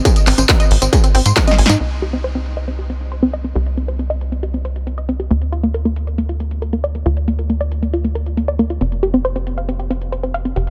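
A lush, detuned unison pluck plays up-front, sidechain-pumped arpeggios through tape echo, with a filter sweep from 1.8 seconds, in this driving, soaring uplifting trance piece at 137 BPM, backed by a tight, sawtooth-and-square sequencer bass that pumps in time, a punchy analog drum machine of congas, handclaps, hi-hat, snare and tambourine re-recorded in a large room, and a distorted, layered electronic kick that stops at 1.5 seconds during a short drum fill, the whole track bathed in digital ambience as the harmony moves from Ab through Bb/D to F5.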